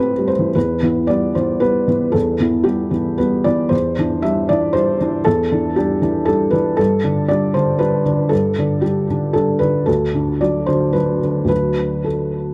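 Moving in a rubato 3/4 at roughly 104-121 BPM, this short excerpt of neoclassical minimalist piano has an intimate, hopeful mood, carried by a solo felt-muted upright piano spanning D2 to E5. The piano sounds soft and mellow, with audible action noise and tape echo, sitting up front in a dry, close 1970s-style studio recording with small room ambience. The harmony drifts from Am7 through Em and Gsus2, reaching D at 9.9 seconds.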